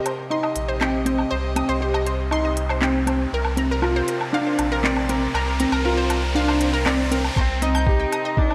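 A soft, intimate felt-muted upright piano riff with tape echo and a rich, earthy chamber string section in the background open this hypnotic, moving piano and strings electronica excerpt, soon joined by a bright, detuned analog pluck playing arpeggios with chorus, tape echo and sidechain pumping, a crisp, tape-warm organic electronic kit of handclaps, hi-hat and woodblock, a round sub bass up front with sidechain pumping, and an electronic riser and swell that build until the drop at 7.4 seconds brings in a thumpy, muffled kick drum and a dark, boxy solo cello melody, set in a wet recital hall reverb.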